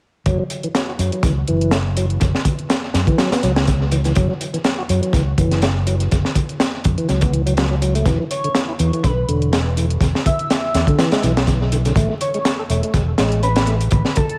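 Swaggering and gritty, this short breakbeat cut from a longer piece rolls along at 123 BPM in 4/4 with a light swing on the sixteenths, set in F# minor. A crunchy breakbeat kit sits up front with a punchy kick, a high-tuned snare and a dark, saturated tone with a rolled-off top, joined by a layered electronic hi-hat tucked low in the mix. A fingered electric bass, amped and punchy with tube saturation, holds the low end alongside the kit from the start. A fat, lightly overdriven tonewheel organ plays the riff through chorus vibrato and a slow rotary speaker, its key click audible under the tape echo, moving from F#7 to E7 at 8.1 seconds and on to Amaj7 at 12.0 seconds. At 8.3 seconds an airy, dreamy lead enters, soft and detuned with portamento and vibrato, filtered through telephone and cassette coloring. The echo-heavy mix carries light reverb, a small-room ambience and a bed of vinyl crackle.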